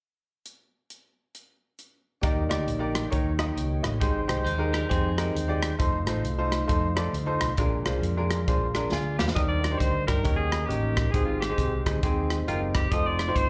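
Uptempo gospel at 135 BPM in Eb major with a soulful, uplifting swing, opening on a crisp fusion drum kit alone before a clear, intimate baby grand piano with audible action noise, a mellow tonewheel organ through a slow rotary speaker, and a round, dark hollow-body bass enter at 2.2 seconds, a clean electric guitar adds a brief background line, an edgy alto saxophone melody with light vibrato enters at 8.9 seconds alongside a drum fill, and the whole excerpt is heard live through a club PA with small-room reverb.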